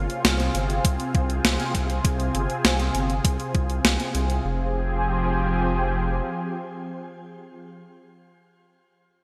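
Bright, 1980s-style digital production sits in a lush hall reverb, giving this short synthwave fragment, cut from a longer piece, a nocturnal, cinematic glow. At a straight 100 BPM in 4/4 and F minor, a silky, string-like analog pad sits up front, its detuned sawtooth chords swelling in with a slow attack, shimmering with ensemble chorus, vibrato and shimmer reverb, and breathing with sidechain pumping. Beneath it, a round, deep analog bass holds low sustained notes with a dark, sine-like tone. A clean 12-bit drum machine supplies hi-hat and an up-front, medium-tuned snare wrapped in gated reverb, while a thumpy electronic kick drum joins at 0.8 seconds. The harmony rests on F minor before shifting to F minor add nine at 4.4 seconds, where the drum machine stops and the pad and bass carry the music onward.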